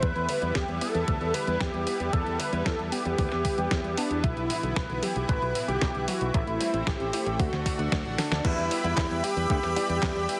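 This nostalgic, danceable Italo disco excerpt in E minor at 114 BPM opens with a bold, wave-folded unison lead carrying the melody through analog chorus and delay, set over a lush, detuned pad holding sustained chords with chorus. Underneath, a growly, punchy fingered electric bass and an overdriven, thumpy electronic kick drive the straight 4/4 groove. A clean 12-bit drum machine adds crash cymbal, handclaps, hi-hat and a fat snare, both drum parts re-recorded in a small room for a sampler-style character. A very quiet, warbling lo-fi pluck traces arpeggios through the Em, Bsus4, Am and D progression until 8.4 seconds, just after a drum fill at 8.2 seconds, when a dark, mellow concert grand piano slips in with background stabs as the harmony returns to Em. A moderate plate reverb lends digital ambience, and heavy multiband compression gives the mix a dense, radio-ready sheen.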